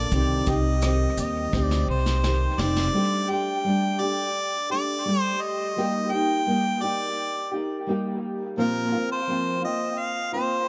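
An echo-heavy mix with light reverb and a small-room feel gives this easy-going, heartfelt acoustic pop excerpt a dubby, spacious sound, with a punchy harmonica carrying the melody up front over a dark, fingerpicked, double-tracked nylon-string guitar, both trailed by dub echo. A woody, growly upright bass and a distant brush kit with a punchy kick and rolled-off top support the opening, where the drums play a fill from 1.5 s until they and the bass stop at 2.9 s. A very quiet, bright, twangy twelve-string electric guitar adds picked arpeggios until 3.5 s, leaving harmonica and nylon guitar to carry the rest over chords moving from Cm through Gsus2 and Eb/G to Bbsus2.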